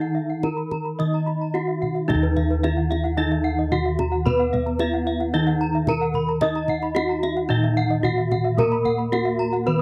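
This hypnotic, shimmering excerpt of Balinese gamelan opens with every part sounding at once: bronze metallophones, bossed gongs and kendang drum, with one higher metallophone joining at 0.1 seconds. A bright metallophone carries the melody up front, while a lower metallophone plays accompaniment beneath it. Two upper metallophones spin out arpeggios, one airy and struck with a horn mallet, the other sounding through a wooden mallet. All the metallophones use paired tuning, so their ringing notes pulse with beating shimmer. Round, mellow bossed gongs hit with padded beaters hold the bass up front, and the soft-handed kendang adds tight, close percussion until 9.6 seconds. The dry, close studio sound has a 1970s character, and the passage moves from a short opening section into a longer one at 2.1 seconds.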